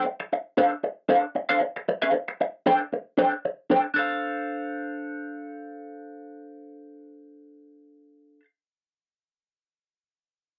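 An up-front electric guitar through a small old amp, dark and slightly broken-up with picked, compressed notes and a wah effect, plays a hypnotic funk accompaniment over a Dm7 chord, shifting into a new section at 4.0 seconds, in a dry, close 1970s-style studio recording with light reverb, cut from a longer piece.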